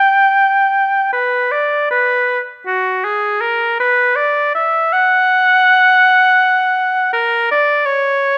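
Rubato phrasing moves freely around a pulse of 80 BPM in 4/4 throughout this brief 8.4-second passage, cut from a longer baroque-style classical fantasia. A solo oboe sits up front, its warm tone carrying a light vibrato and a smooth top as it ranges from F#4 to G5 in a flowing, grave mood. Light reverb gives the unaccompanied line a gentle sense of space.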